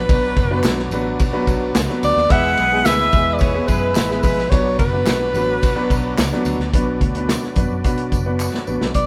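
A band playing live in a single stone room with a moderate reverb gives this brief cut from a longer piece the feel of uptempo 1960s-style soul, urgent and passionate, at 108 BPM in B dorian, with chords moving from Bm to E and back to Bm. A breathy, close-miked alto saxophone carries the melody up front with jazz-style vibrato, while a distant, tight saxophone section adds a clear second line from 2.3 to 3.9 seconds, and a gritty overdriven tonewheel organ with key click and chorus vibrato holds sustained chords in the background. Underneath, a round, foam-muted electric bass, an intimate grand piano with audible action noise, a vintage drum kit with dark cymbals and a tight kick, and tambourine, maracas and group handclaps drive the groove, with a drum fill at 8.4 seconds near the end of the closing section.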